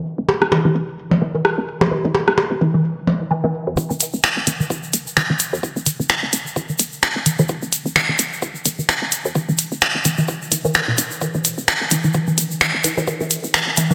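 Clinical and hypnotic, this minimal techno excerpt runs at 129 BPM in 4/4 with a swung sixteenth feel, opening on a woody, round FM bass with tube saturation and sidechain pumping beneath a squelchy, detuned blip pluck riff treated with phaser, chorus and digital delay, while up-front electronic percussion blips and a rim click play only until 3.2 seconds as a filter sweep moves over the synth arpeggio. At 3.8 seconds a build-up begins as a deep, tape-warm electronic kick drum and a grainy, saturated tube shaker enter, joined at 4.0 seconds by a clicky minimal drum kit of finger snaps and hi-hat. The bright 1980s-style digital production sits in a lush hall reverb with a two-second tail.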